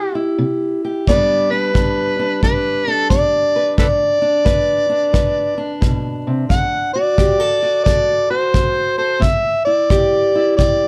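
A swung 88 BPM groove in 4/4 carries this soulful, swaggering acoustic country blues in G major, where an overdriven, gritty harmonica leads with tongue slaps, scooped notes and light vibrato in a jazz-style solo over a dark, boxy fingerpicked parlour steel-string guitar, with a punchy kick drum joining at 1.1 seconds, all set up front in light reverb as chords move from C through G and D back to C in this cut from a longer piece.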